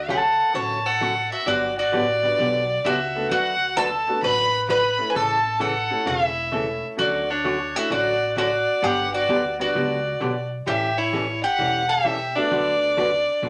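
Country western swing in D major at 130 BPM, with a playful, down-home swing in 4/4, where a clear, intense fiddle carries the melody with light vibrato up front while a picked, bright bowl-back mandolin adds a second line, also up front. Underneath, a growly, pizzicato upright bass and a dark, compressed, clean hollow-body electric archtop guitar keep the accompaniment moving through chords like Dmaj7, Gmaj7, D6 and A7. A brilliant, intimate upright piano joins at 2.2 seconds with audible action noise and short sustain, all set in a wet studio ambience on this excerpt from a longer piece.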